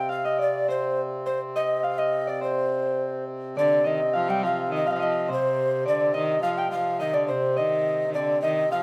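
Driving and mysterious, this brief medieval dance moves in a straight two-beat metre. A mellow, hollow tenor recorder carries the melody up front, its airy wooden tone marked by a chiff on each crisp attack and by vibrato. A fingerpicked Celtic harp plays a ringing second line alongside it, while a hand-pumped harmonium holds a low, breathing, reedy drone underneath. At 3.6 s a viola da gamba joins with another second line, one bowed, fretted player giving a biting, nasal gut-string tone in period style. The small room adds a moderate reverb to the rough home-demo mix, which stops at 8.8 s since the passage is cut from a longer piece.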